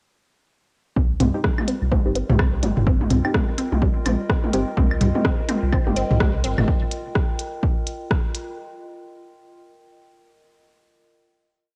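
A punchy, up-front four-on-the-floor kick drives this cool, clinical minimal techno piece, recorded at home on cassette, joined by clicky hats and rim from a minimal kit, electronic toms and claves clicking in cross rhythm, a rubbery, nasal square bass riff pumping under sidechain compression, a squelchy resonant blip pluck cycling a phased 10-step loop that drifts against the bar as a filter sweeps across it, muted dub chord stabs echoing in the background, and a warbling, nostalgic tape-like pad that fades in from 1.8 s and lingers until 8.6 s.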